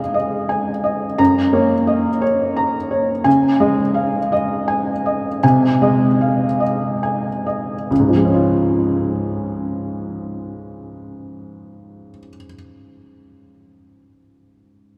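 Peaceful and hopeful, this fragment of neoclassical minimalist piano drifts in a rubato 6/8, easing into a slowdown between 2.2 and 7.9 seconds. A solo felt-muted upright piano, mellow and intimate with a boxy, short-sustained tone and audible action noise, sits up front while a cathedral reverb opens a vast, echoing space around it. Its chords move from Dbsus2 through Gb and Ab/C before settling on Db at 7.9 seconds.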